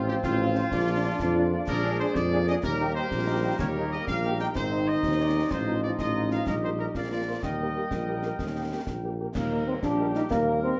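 A large, wet studio reverb surrounds this spirited wind band march, a short cut from a longer piece in Eb major at 125 BPM in a straight 6/8. A bright trumpet section carries the melody with light vibrato, while a clear, distant woodwind section plays a second line. Punchy, close-miked trombones hold sustained chords in the background, and a French horn section adds accompaniment from further back in the room. A mellow tuba with a smooth top sits up front on the bass, and a close concert snare, bass drum and dark clash cymbals drive the rousing, classical-style march. Near 9.3 seconds a warm, soft-attacked euphonium steps forward with its own second line as the opening strain begins again.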